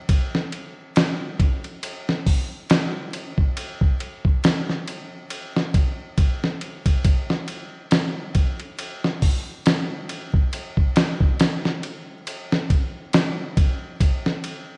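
A dusty, sampler-style soul drum kit carries this brief trip hop excerpt, playing from 0.1 to 14.7 seconds with hi-hat, kick drum, snare drum and ride cymbal. Its sound is gritty and compressed, with a thumpy kick, a medium-tuned snare and a tape-warm character, re-recorded in a large room yet sitting up front in the mix. The groove moves at a slow 69 BPM in 4/4, with a 56% swing on the sixteenths. Light reverb, vinyl crackle and a rough home demo quality add to the worn, lo-fi atmosphere. The mood is cinematic and melancholic, like a fragment lifted from a longer piece.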